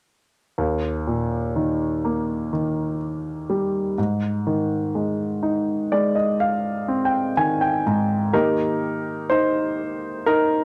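Heartbroken and longing, this slow pop fragment at 62 BPM, cut from a longer piece, features only a clear, intimate grand piano with audible action noise and a cassette-tape treatment, moving from Eb to Ab across a range from Eb2 to Ab5 before a fill at 5.4 seconds leads into a solo passage back on Eb at 8.3 seconds, all in a light reverb with a homespun cassette sound.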